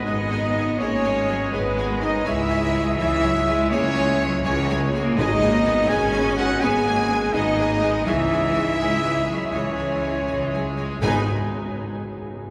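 A vast, cathedral-like reverb surrounds this dark, epic orchestral film cue in G# minor, moving at 82 BPM in a slow 6/8 as it alternates between G#m and C#m in a passage cut from a longer piece. Dark, distant French horns and a hollow clarinet-stop pipe organ with tremulant hold sustained chords, while lush bowed cellos and smooth double basses carry the bass, clear distant violas accompany, and a very quiet violin melody sits on a high G#. Pure, crisp-attacked flutes and a second violin line share the upper register, mellow trumpets add soft stabs in the background, and hard-mallet timpani strike on G# at 0.0 s, around 5.2 s and again near 11.0 s.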